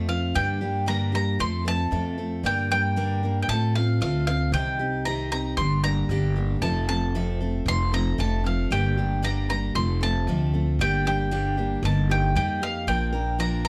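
Picked steel-string dreadnought guitar and pizzicato upright bass open this nostalgic, pastoral acoustic folk excerpt at 115 BPM in a straight 4/4, with a bowl-back mandolin entering at 0.1 seconds to carry the high melody. The bright, full-bodied guitar picks through a G minor progression touching F, C minor, E-flat and B-flat, while the woody, thumpy gut-string bass anchors the low end. Close, detailed microphones and light reverb keep all three parts up front, and the mandolin's picked double strings sound warm.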